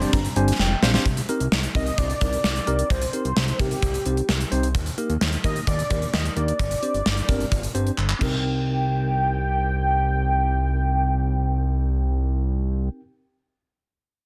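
This synth-pop excerpt, cut from a longer piece, moves at a steady straight pulse with a cool, melancholic air. A velvety synth lead carries the melody, its smooth detuned tone thickened by a sub octave, chorus, vibrato and tape echo, while a clean tine electric piano, played through a combo amp with medium tremolo, supplies the accompaniment and opens with a short fill. Underneath, a fat analog bass sits up front with a saturated, wave-folded sawtooth character and a filter sweep, and a gated 80s drum kit drives the groove with a punchy kick, a medium-tuned snare, handclaps, hi-hat, bright cymbals and a crash. The harmony circles through Gsus4, Cm7 and Eb, with drum fills marking the section changes just before 1.1 seconds and again before 8.4 seconds. The drums stop at 8.3 seconds, leaving the lead, piano and bass to carry the final stretch in a light, small-room ambience within a dense, heavily limited modern master.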